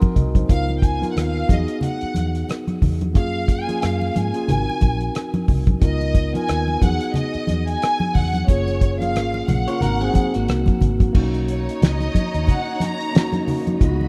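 A cloth-damped, thuddy drum kit sits up front in this lush 1970s-style soul excerpt. Its fat snare, tight kick, rim clicks, hi-hat and dark crash give a dry, rolled-off thump at 90 BPM in 4/4, with a 58% sixteenth-note swing. A clean tine electric piano opens with a short fill, then settles into accompaniment over C#13, Emaj9, F#maj9 and G#7, while bright, close congas played with soft hands add texture. A vintage muted fingered bass, round and punchy with tube saturation, enters just after the start, and a distant violin section carries the melody with expressive vibrato. Near 9.7 seconds an electric guitar through a small old amp adds a brief, slightly broken-up picked riff, and at 11.1 seconds the harmony moves to Bmaj9 as an intimate sul tasto string section enters with sustained chords, all set in light reverb and small room ambience with a rough home-demo character.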